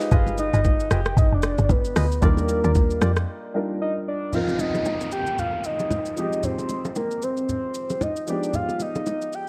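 Amapiano with a deep, hypnotic mood and a swung sixteenth-note feel, built on a knocking, up-front R&B drum kit with hi-hat, kick, rim click and shaker, bright congas and bongos, and a mellow, boxy dark grand piano moving through rich minor and altered chords. A hollow, organ-like stab plays only until about 3.1 seconds, and a woody, punchy log drum bass drops out at about 3.3 seconds, before a brief break; a round, full-bodied octave-layered synth lead with chorus, phaser, tape echo and vibrato carries the melody throughout. A downlifter sweeps in from 4.3 seconds, and the whole cut sits in light digital ambience with the worn, warbling pitch drift of old cassette tape.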